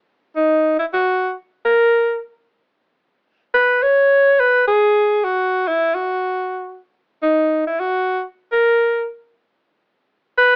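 A relaxed swing feel in 4/4 at 140 BPM carries this short jazz passage cut from a longer piece, with the eighth notes lilting at 67% swing. An alto saxophone plays alone as the soloist from 0.4 seconds through 10.6 seconds, ranging from D#4 up to C#5 in a tuning pitched at A4 = 439 Hz. Its tone is clear and sits up front, shaped by a soft attack, vibrato and scooped notes in a classic jazz style. A moderate club reverb with a short 0.5-second tail places the horn in an intimate room. The recording has an AM radio sound, lending the easygoing, swinging mood a nostalgic, lo-fi character.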